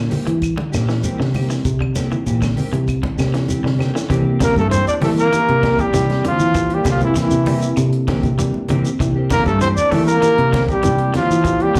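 Heard at a live gig through the venue's PA with a touch of club reverb, this funky, hypnotic afrobeat excerpt at 98 BPM in C mixolydian rides on a round, foam-muted fingered bass up front, a compact cocktail kit with a high-tuned snare and tight kick, ringing congas, a grainy shekere, and woody claves that stop at 4.0 s as a short drum fill leads into the next section. A bright, clean semi-hollow guitar plays arpeggios with warbly pitch drift and slapback echo, while a dark, fingered electric guitar adds stabs through lush chorus. A reedy, worn, slightly out-of-tune electric piano enters very quietly at 4.1 s, and from 4.4 s a breathy, whispered trumpet carries the melody with scooped notes and vibrato, joined by a raspy, growling trombone on a second line.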